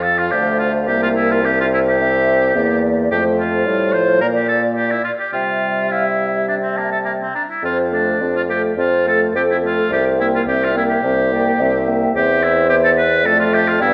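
Moving in a flexible 4/4 at 107 BPM with a rubato feel, this quick, lively classical-period movement for wind quintet is a spirited fragment cut from a longer piece. An airy, hollow concert flute carries the melody from the background, its tongued notes touched with vibrato and softened highs. A clear oboe sits up front on the second line with light vibrato, while a French horn with its own vibrato and a dark, very quiet clarinet fill in the accompaniment. A mellow bassoon anchors the bass from its up-front, roomy position. All five instruments play throughout the 13.9 seconds over a harmony centred on F, passing through C7, Bb and C before closing on C/E and Dm/F. A wet scoring-stage reverb with a 1.6-second decay gives the ensemble a spacious glow.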